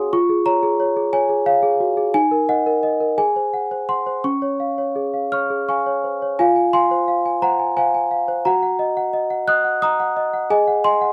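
Closely miked in a moderate studio reverb, this short cut from a longer classical lullaby in Db major features a solo celesta, bell-like, delicate and up front, drifting through a dreamy, innocent 6/8 at a rubato 58 BPM in dotted quarters, its sweet chords moving from Db through Ebm and Ab7 back to Db before a second phrase opens on Fm at 6.4 seconds and settles back onto Ab7.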